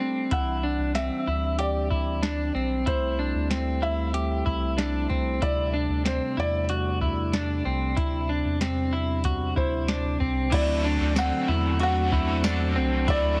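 Heavily compressed with a radio-like sheen and light digital ambience, this ethereal, floating dream pop excerpt drifts at 94 BPM in D mixolydian. A mellow, flute-like tonewheel organ with slow rotary speaker holds sustained chords beneath lush, chorused and delayed clean electric guitar arpeggios, while a felt-muted upright piano with audible action noise carries the delayed melody over a round, deep analog bass and a soft vintage rhythm box with deep kick, tonal snare, metallic hats, crash, ride and tambourine. At 10.5 s the harmony moves to D7 as a bright, overdriven stack guitar joins with harmonic tremolo and ensemble chorus for the closing stretch.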